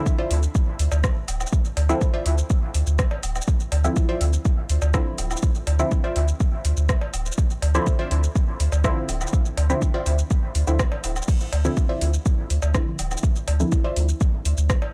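An overdriven, deep electronic kick drum sits up front, layered and re-recorded in a large room, anchoring this cavernous, hazy dub techno excerpt at 123 BPM in straight 4/4, D minor, held on a single Dm9 chord. Beneath it, a soft, round dub sub bass of triangle and square waves, also up front, sustains between D1 and D2 with transformer saturation and sidechain pumping. A muted, evolving filtered dub chord stab of detuned sawtooth, pumping through chorus, phaser and dub echo, plays from 0.0 seconds, while a crisp, wave-folded wavetable chord stab rides higher, from F4 to E5, with a moving notch and its own echo. A soft vintage rhythm box adds metallic analog hats, crash cymbal, rim click and shaker, and a layered cowbell and woodblock, re-recorded in a small room, joins at 0.9 seconds with pumping and dub echo. The whole is a dry, gritty hardware recording set in digital ambience, cut from a longer piece.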